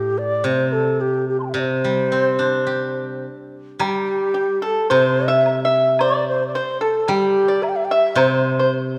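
A dark production bathed in moderate concert hall reverb frames this graceful, festive excerpt of Chinese traditional chamber music, played with a free, rubato feel. A breathy, reedy bamboo xiao carries the melody up front with vibrato and tongued notes, over a silvery, ringing steel-string zither played with fingerpicks that sounds from 0.0 to 9.0 seconds. At 3.8 seconds a mellow, percussive pipa adds a second line, joined by a close, dry woodblock sitting in the background.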